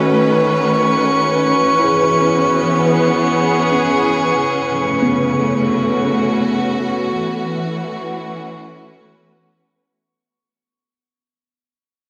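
Serene and luminous, this ambient passage at 65 BPM in 3/4, cut from a longer piece, sets a lush, up-front bowed string section with vibrato holding sustained chords (B9, C#m7, Bsus2, A69) beside a worn, slightly out-of-tune tine electric piano that fades in with delayed arpeggios in the background until 7.6 seconds, while a glassy sine texture of drifting overtones hovers high with chorus, all inside a wet, echo-heavy plate reverb before the fade-out from 6.2 seconds.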